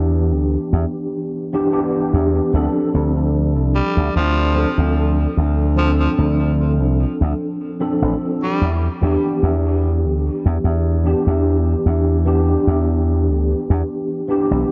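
A dreamy, reverb-soaked mix with the dulled, cassette-tape haze of a lush hall gives this short vaporwave fragment a nostalgic, woozy air. At a relaxed 74 BPM in 4/4 with a light swing, a mellow tine electric piano sits up front, its clean tone colored by ensemble chorus and analog delay as it carries the Em7 and Dm7 harmony. Beneath it, a punchy slap bass runs through an envelope filter, sounding bright, amped and direct. A raspy tenor saxophone takes the melody from 3.8 to 8.7 seconds, its pop-style solo line gritty with vintage sampler crunch, vibrato and analog delay. The passage is cut from a longer piece, ending as the piano and bass carry on through the returning Em7.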